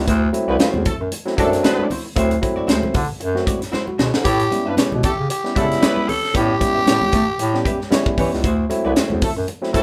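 Barky, lightly overdriven electric piano stabs and a smooth, soft-attack bass clarinet open this energetic, strutting funk excerpt at 115 BPM with a swung sixteenth feel. A tight drum kit with a high-tuned snare, thick-skinned congas, a dark hollow-body guitar with wah in the background, and a loose horn section with vibrato and octave doubling soon fill out a live-room sound over D9 and A9 chords. After a drum fill at 3.7 seconds, a raspy, growling tenor saxophone carries the melody up front from 4.2 to 8.1 seconds.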